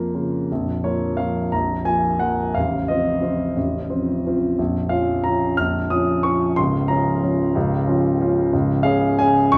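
A baby grand piano opens this graceful, playful classical waltz in Bb minor. It plays solo in 3/4 with a rubato feel between 156 and 192 BPM, ranging from A0 up to F6 and moving through Bbm, F7/A and Bbm/Db before reaching Db at 8.5 seconds. The piano sits up front with a present, polished tone and long sustain, bathed in a wet large studio reverb within a dark production, and the passage is cut from a longer piece.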